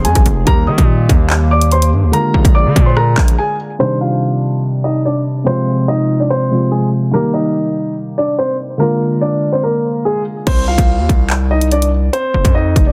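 Cold and menacing, this half-time drill excerpt opens with a dark baby grand piano carrying the melody up front, its mellow, intimate tone softened by a low-pass filter and trailed by delay, with the natural noise of its action audible. Beneath it, a felt-muted upright piano plays soft, thick-felted accompaniment, while a warbly, nostalgic tape-like pad holds lo-fi chords in the background, colored by chorus and its own reverb. A distorted 808-style bass hits hard and saturated, with a fast attack and a gritty noise layer, alongside a drill drum kit of hard-clipped kicks, bright hi-hats, rim clicks, handclaps and crash cymbal. The drums and bass drop out at 3.4 seconds, leaving the pianos and, briefly, the pad over shifting chords, then crash back in at 10.5 seconds as the upright piano stops and the grand carries on. The dense, heavily limited modern master, filtered and set in a digital ambience, keeps the sound close and oppressive.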